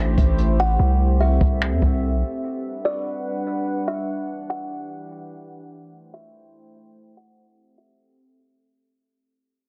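Atmospheric cloud-rap hip hop with a melancholic, ethereal half-time feel, where a buzzing, woody kalimba melody drifts over a warbly, nostalgic tape-like pad with chorus and pumping sustained chords through Am7, C6, Gmaj7 and Em9, while a deep, mellow 808-style bass sounds only until about 2.2 seconds and an airy jazz brush kit with finger snaps, hi-hat and a boomy kick plays only from about 0.2 to 1.9 seconds, all wrapped in a small room and a heavily compressed, low-passed radio sound as the fragment fades out.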